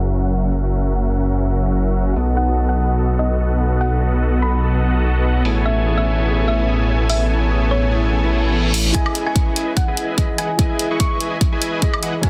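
A huge, airy, detuned supersaw riff drives this lush, euphoric future bass excerpt in E major, pumping with sidechain at 146 BPM in a half-time, lightly swung feel, over a thick, saturated saw bass that holds until 8.9 seconds. From 2.4 seconds a round, tine-like FM pluck carries the melody beside ringing fingerpicked harp arpeggios, while a dark, worn grand piano with audible action noise sits in the background, electronic hi-hat and woodblock play underneath, and a reverse cymbal leads into the build-up, where a punchy kick drum enters. The chords move from F#7 through B7 to Amaj9 under a filter sweep, then settle on Emaj7, with digital delay on the piano, supersaw and harp, and a dense, heavily limited master.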